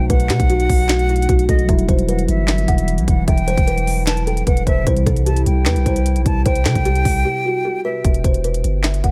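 A deep, sine-toned 808 bass and an up-front trap kit with a hard-clipped kick, sharp snare, crisp hats and handclaps drive this brooding, hard-hitting half-time trap excerpt at 151 BPM in E harmonic minor, while a woody, hollow kalimba carries the delayed melody alongside an airy flute second line with vibrato, a mellow tine electric piano and a warbling, nostalgic lo-fi pad in the background, before a break at 7.2 seconds gives way to a closing E minor chord at 8.0 seconds.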